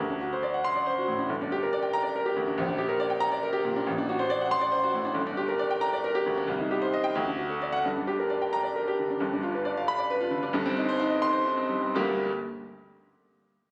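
Captured on a phone in a recital hall with moderate reverb, this stormy, agitated fragment of a virtuoso classical piano study features a smooth, vintage-toned grand piano up front, playing alone in a rubato 6/8 from low bass to high treble. It slows from 8.5 to 11.9 seconds and falls silent at 12.3 seconds.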